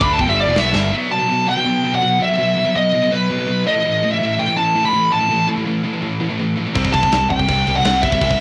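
A bright, high-gain lead guitar sits up front, carrying the melody between B4 and B5 over an aggressive, heavy metal passage at 165 BPM in straight 4/4, cut from a longer piece. Beneath it, two scooped, picked guitars and a thick, double-tracked fuzz guitar churn out distorted riffs from E2 to D4, tucked into the background with a cassette-tape grit. A tight acoustic drum kit, with a medium-tuned snare, crash, ride and a mid-forward sound in a big room, opens with a fill alongside a growling, overdriven picked bass. The drums drop away at 0.8 seconds and the bass at 0.9, leaving the guitars to carry the riff alone, then both return at 6.8 seconds. The harmony moves from E minor through B5 and A5 to C, all set in a home cassette recording with light reverb and small-room ambience.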